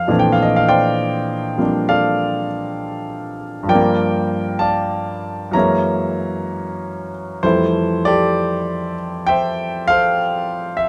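Solo jazz piano with a playful, swinging mood, this short excerpt is drawn from a longer piece and moves in a relaxed 4/4 with a swung eighth-note feel and rubato phrasing. A concert grand plays alone from start to finish, its sound intimate and natural, placed up front with deep bass and the audible noise of its action adding a close, tactile presence. The harmony drifts through rich extended chords, opening on Bbmaj9#11, passing through Gm9 and Gb9, and settling on Fmaj9 at 7.4 seconds as the second section begins. A moderate club reverb gives the instrument a small-room glow around its lush voicings. The result feels unhurried and personal, like a late-night set heard from a nearby table.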